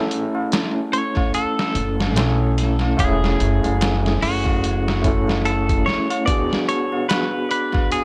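A barky, overdriven tine electric piano with fast tremolo, vintage sampler grit and tape echo sits up front in this dark, hypnotic trip hop excerpt, over a muffled, pitched-down sampler-style drum kit with a thumpy kick and a swung 16th-note feel. A twangy, clean electric guitar carries the melody from 0.9 s, a high-tuned tabla with a short ring sits in the background, and a woody pizzicato upright bass on gut strings plays from 1.7 s to 5.8 s. The mix is dry and echo-heavy, with little reverb.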